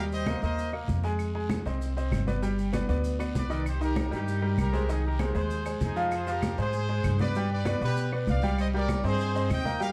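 A driving, straight 4/4 salsa pulse at 195 BPM in C minor carries this passionate fragment, with an up-front, woody pizzicato upright bass, a bright, intimate grand piano with audible action noise, and low-tuned background congas, distant grainy maracas, very quiet claves and a raspy, saturated guiro, while a tight, brilliant trumpet section with light vibrato leads the melody, sounding briefly at the start and returning at 3.4 seconds through a moderate large-studio reverb and a dark overall production.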